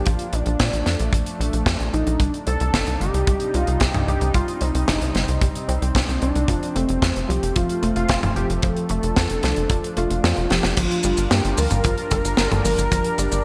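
Driving and nocturnal, this synthwave excerpt in straight 4/4 carries a bright, 1980s-style digital sheen washed in a lush hall reverb. A tight, punchy sequencer bass sits up front with a sawtooth-and-square bite, while a thick, detuned unison pad holds sustained chords with chorus, vintage 12-bit sampler grit and sidechain pumping. Over them, a bold, wave-folded unison lead carries the melody with vibrato, analog chorus and delay. From 2.2 seconds a warbling, lo-fi pluck adds chorused, delayed arpeggios in the background. A punchy kick and a polished acoustic kit, its high-tuned snare, crash, hi-hat, shaker and toms treated with gated reverb, drive things along. The kick drops out briefly before a drum fill at 10.5 seconds, and the harmony moves from Bb through Cmadd9 and F to land on Gm7 at 10.8 seconds.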